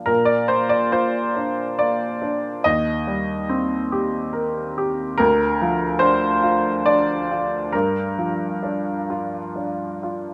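Neoclassical minimalist piano in Bb major, peaceful and tender, with a solo upright piano that sounds woody, worn and slightly detuned, played with rubato at 71 BPM in an uneven 3/4, its long-sustaining notes sitting up front in light reverb as the chords move from Bb through Eb6 and Bb/D to Gm7 across this brief cut from a longer piece.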